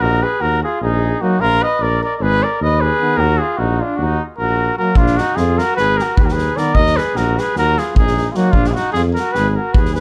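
This Balkan brass band folk piece moves in a straight 9/8 metre, its mood bittersweet and restless, and it is cut from a longer piece. A mellow cornet carries the melody up front, its soft attack touched by an analog delay, while a distant, roomy flugelhorn plays a second line in a classical style. Beneath them, a warm tuba holds the bass up front with light vibrato and a smooth top. From 1.2 s to 8.5 s, a bright trombone sits in the background and a dark euphonium with vibrato fills out the accompaniment. A loose acoustic drum kit enters at 5.0 s with a punchy kick and a medium-tuned snare, its rolled-off top heard in a studio room, all under a light reverb.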